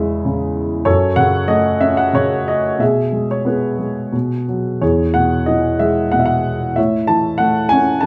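Classical solo piano in a lyrical vein, this short passage from a longer piece feels sunny and hopeful. It moves in 3/4 at around 91 BPM, though the beats are uneven and the pulse breathes with a gentle rubato. The only instrument is an upright piano with a woody, up-front tone, ranging from E2 to A5 and playing throughout the full 8.1 seconds. Rooted in E major, the harmony moves from C#m/E through F#m and E6/B to B5, arriving on E at 4.8 seconds before settling onto A near the close. A light reverb adds a touch of space around the piano.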